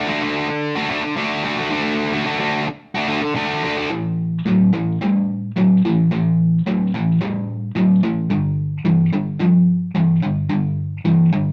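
A bright, picked electric guitar, distorted, double-tracked and compressed, sits up front alone in this driving, swaggering rock excerpt cut from a longer piece, moving from a D chord to A5 at 3.9 seconds and G5 at 8.3 seconds, captured with light reverb as if played live in one room.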